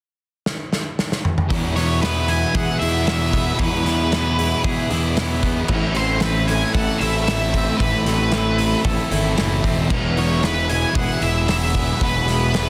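A loose, punchy indie drum kit opens this dreamy, wistful shoegaze and dream-pop fragment with a fill at 0.5 s, and at 1.5 s the dense, heavily limited band arrives: a round, fuzzy picked bass up front, a thick, dark fuzz guitar riff and an overdriven guitar riff trailing reverse reverb in the background, twangy clean arpeggios glistening through lush chorus and slapback echo, and a very quiet vintage string machine holding bright sustained chords, while an octave-fuzz lead guitar enters at 1.8 s with a distorted melody over chords that move from Eadd9 to Am and back.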